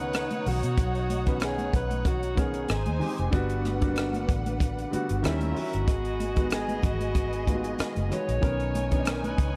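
Lush 1970s-style soul with a romantic mood, this short excerpt from a longer piece moves at an easy pace with a light swing on the sixteenths. A mellow alto saxophone carries the melody with light vibrato, sounding distant and roomy, while a studio string section plays a smooth, intimate second line with soft, bowed attacks. A baby grand piano with a natural, short sustain fills in the accompaniment, and a vintage muted fingered electric bass gives a round, foam-muted, punchy low end. A compact cocktail drum kit sits up front with a dry, punchy kick, hi-hat and rim click, and high-tuned, damped congas add bright, compressed, saturated hand percussion in the background. Near the close, at 8.4 seconds, a delicate, bell-like celesta sounds very quietly as the harmony returns to Bmaj9, all framed by light reverb and small room ambience in a dark production.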